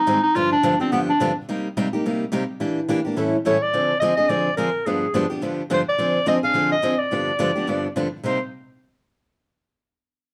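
A bright, punchy clarinet carries the melody in an up-front jazz solo, its vibrato-laden tone forceful yet set back in a roomy, distant space. It opens with a brief phrase, falls silent, then returns at 3.5 seconds to play until 8.4 seconds in this short cut from a longer piece. Beneath it, a picked steel-string acoustic guitar accompanies from 0.1 seconds onward, its bright concert sound marked by audible finger squeak. The swinging, bittersweet mood rests on a minor-key progression rich in half-diminished and dominant chords, landing on Cm7 at 8.2 seconds. Moderate studio reverb and a dark production frame the two players.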